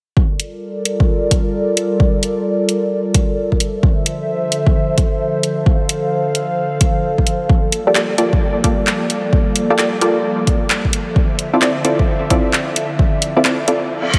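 UK garage in a two-step vein, skippy and late-night, with a swung 16th-note lilt and a dreamy mix soaked in cathedral-sized reverb. An overdriven analog kick, re-recorded in a large room, sits up front beside a layered garage kit of handclaps and hi-hats, while an airy, breathy pad with a warbling vintage character holds sustained Gm7 and Dm7 chords under sidechain pumping, chorus and a filter sweep. At 7.9 seconds a punchy, detuned sawtooth chord stab with a filter pluck and tape echo joins, and a reverse cymbal arrives at 14.0 seconds as this excerpt of a longer piece cuts off.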